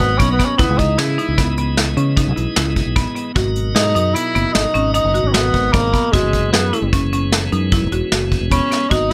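Set in a straight-feeling 7/4, this short, tense cut from a progressive instrumental band piece moves through G#m7, C#m9 and F#9sus4, with a vintage brush drum kit playing hi-hat, kick and snare with a rolled-off top in a small room, under a dark, round, punchy fingered electric bass. A tenor saxophone carries the melody up front with classical-style vibrato and a roomy, distant tone, while a buzzing, woody marimba struck with hard mallets spins intricate arpeggios. A piping, lightly overdriven tonewheel organ with a slow rotary speaker sits lower in the mix as accompaniment, and the overall sound is dry.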